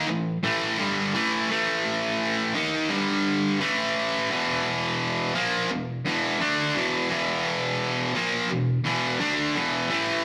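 A rough rehearsal-room recording in a moderately reverberant stone room gives this short rock cut, taken from a longer piece, a raw, live-in-the-space character. A lone distorted electric guitar carries everything, sounding bright, picked and overdriven, double-tracked and placed up front, ranging from E2 up to D#4. The mood is gritty and raunchy, moving at a straight 86 BPM in 4/4 with the tuning set to A4 = 444 Hz. Power chords drive the harmony, starting on A5, shifting to G5 at 2.9 seconds, returning to A5 and landing on E5 as the passage begins again at 4.3 seconds. The second pass restates the opening section and runs until the cut ends at 10.2 seconds.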